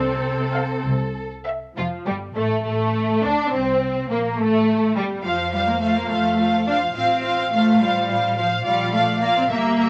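In a rubato 6/8, this graceful, spirited classical-period movement for string orchestra, cut from a longer piece, brings in a focused, up-front violin melody at 0.6 s over a soft-attack second violin line in the background, expressive violas with portamento, a rich, even cello bass and dark, woody double basses, all bowed with vibrato in a moderate studio reverb.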